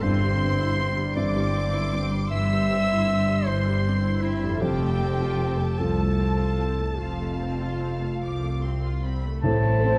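A dark, roomy scoring-stage sound frames this bittersweet, longing film-score cue in a rubato 6/8, cut from a longer piece. A clear, focused violin section carries the melody over a lush second violin line and a soft-attacked solo clarinet, while a background grand piano, an expressive viola section with portamento, and a ringing, thumb-plucked harp fill in beneath, resting on an up-front double bass section and an even, close cello section, all of these strings bowed with vibrato. At 9.4 s an airy, hollow flute, a tight, very quiet French horn section and timpani played with medium mallets on calf heads enter as the harmony moves from C/G through F to a rootless F/A.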